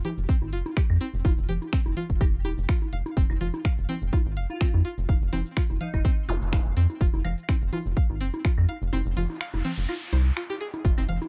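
Hypnotic and quirky, this minimal techno excerpt in F minor rides a swung 125 BPM groove: a punchy, up-front electronic kick and a rubbery, sidechain-pumped square bass anchor crisp hi-hats, finger snaps and shaker, while overdriven bongos, congas and claves add grit. A twangy, string-like resonator pluck riff carries chorus and dub echo, and a soft, dreamy lead with vibrato floats in briefly at 4.5 seconds. Zaps enter at 6.3 seconds, and the kick drops out at 8.9 seconds just before a noise sweep arrives at 9.2 seconds, all in a dry, close mix.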